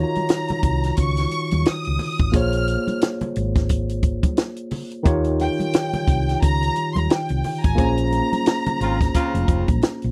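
An 88 BPM groove in 4/4 with a swung sixteenth feel carries this lush, bittersweet 1970s-style soul passage in Bb minor, cut from a longer piece, where a compact cocktail drum kit with a punchy kick and high-tuned snare sits up front alongside a dark, round hollow-body bass, and soft-handed congas tap in the background. A worn, slightly out-of-tune tine electric piano comps through chords like Ebm9 and Bbm9 while a studio violin section sings the cinematic melody high above with expressive vibrato and portamento. A band accent arrives at 7.8 seconds, and a smooth, soft-attack jazz horn section adds brief stabs from 8.8 seconds, all captured in a dry, close studio sound.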